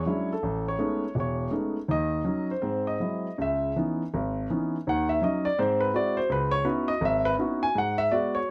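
Cool and swinging, this 8.5-second excerpt of solo jazz in C# minor at 164 BPM features an intimate, up-front grand piano alone, ranging from deep bass to the upper middle, with long sustain and audible action noise, moving with rubato and a swung feel through rich chords like Amaj9#11, G#aug7 and C#m11, captured by close, detailed microphones in light reverb.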